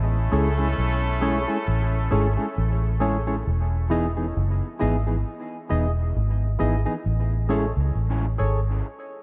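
Hazy and spacious, this short excerpt of reggae moves at a relaxed 67 BPM in 4/4 with a swung sixteenth-note feel, set in E major over an echo-heavy mix with light reverb. A clear, vintage horn section with light vibrato and octave doubling carries a tight second line through the opening 3.0 seconds, its phrases trailing off into dub echo. Underneath, a dark, round, foam-muted fingered electric bass sits up front from the very start, anchoring the low end. A mellow, clean electric guitar supplies dark, fingered accompaniment soaked in dub echo, while a hollow, percussive organ stab with a fast, decaying attack adds chorus-tinged, echoing accents higher up. The harmony drifts from Amaj7 to Emaj7 at 3.5 seconds and returns to Amaj7, giving the passage a dreamy, suspended quality.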